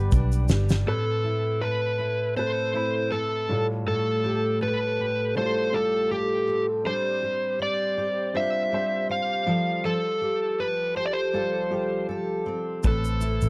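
A gently swung sixteenth-note feel in 4/4 carries this reflective, wistful acoustic pop piece, cut from a longer work. It opens with a brief drum fill on a loose indie kit, with a punchy kick and fat snare in a pumping studio room, joined by a grainy, bright tube shaker and a dark, round, foam-muted electric bass. These three drop away after the opening second and return at 12.8 s. Throughout, a double-tracked, full-bodied fingerpicked steel-string dreadnought guitar and an intimate, woody upright piano with audible action noise and long sustain carry the accompaniment. From 0.9 s an up-front, overdriven slide guitar sings the melody over a wistful progression that moves through Amadd9, Fadd9/A, Gsus4 and Fadd9 before landing back on Amadd9. The sound is dry and close, with little reverb.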